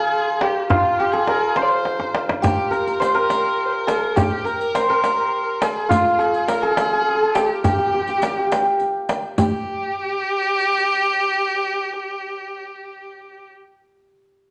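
Set in a roomy studio reverb, this hypnotic, melancholic fragment of a Persian modal ensemble piece in a straight 6/8 features a shimmering, ringing santur carrying the melody up front beside a warm bowed violin's expressive second line, full of vibrato and portamento, while a deep, dry tombak joins almost at once with a brief drum fill before soft-handed riq jingles enter at 2.4 s, both drums falling away at 9.6 s.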